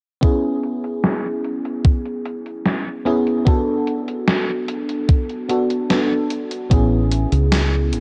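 Vaporwave at 74 BPM in a straight 4/4, this short cut from a longer piece feels dreamy and faded. A mellow FM electric piano carries the accompaniment throughout, soft, round and warbling, with analog chorus and analog delay giving it a dark, vintage shimmer as the chords move from E6/B to Bm7 and then Amaj9 at 6.7 seconds. A thumpy electronic kick sits up front, overdriven and coated in 12-bit sampler grit, and stops at 6.9 seconds. Alongside it, a gated 80s digital drum machine supplies hi-hat and snare through gated reverb, with low-pass filtering dulling the hats, snare and room, while a filter sweep runs on the drums across the passage. A fingered electric bass, foam-muted and amped, arrives only at 6.7 seconds to underpin the final chord. Light reverb and a cassette-tape sound with its top end rolled off give the whole piece a hazy, worn quality.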